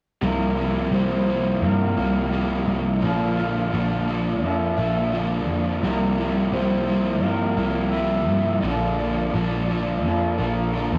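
A rough rehearsal-room recording with warm saturation and a wet small-room reverb gives this short rock excerpt a blissful, hazy glow. Two electric guitars play riffs from the opening at 0.2 s: one runs through a small old amp, dark, slightly broken-up and compressed, while the other is overdriven and picked up front. Beneath them a vintage muted picked bass sits dark, amped and round, its foam-muted tone filling the low end. At 0.9 s a reedy, woody FM lead joins with the melody, sustained and in the background, its noise layer, fast attack, chorus and vibrato adding shimmer. The harmony moves at a straight, unhurried pace between C7sus4 and Bbmaj7, keeping the mood suspended and dreamy.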